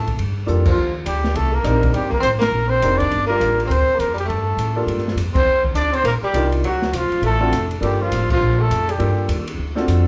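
Cool and late-night in mood, this short cut from a longer piece is small-group swing and bop in G minor, swinging at a brisk 204 BPM in 4/4. A breathy, whispered trumpet carries the melody up front with a soft attack, scooped notes and light vibrato, while a smooth-topped tenor saxophone plays a second line beneath it; both horns carry a slapback echo and stop at 9.3 seconds. A woody pizzicato upright bass with steel strings sits prominently under them, and an open acoustic drum kit with dark cymbals, a medium-tuned snare and a boomy kick has a warm, rolled-off top. Alongside a drum fill at 0.5 seconds, a concert grand piano enters with intimate accompaniment, its action noise audible and its echo matching the horns. The harmony moves from Gm9 through Ebmaj7 and D7#9 back to Gm9, punctuated by several band accents, all heard through a club PA with light reverb and small-room ambience that give it the feel of a live gig.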